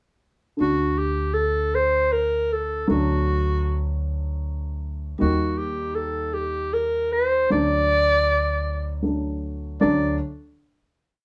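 At 0.6 s a breathy, soft-attacked clarinet with vibrato and scooped notes takes the solo up front, playing a jazz-style modal melody with ornaments, alongside a dark upright piano's short-sustained, syncopated triad chords and a woody, up-front pizzicato upright bass on a quarter-note figure; the piece is a festive yet soulful klezmer tune in 3/4 at 78 BPM in D phrygian dominant, moving from D to Eb and back before a final chord at 9.8 s, with the band playing live in one room under a wet studio reverb.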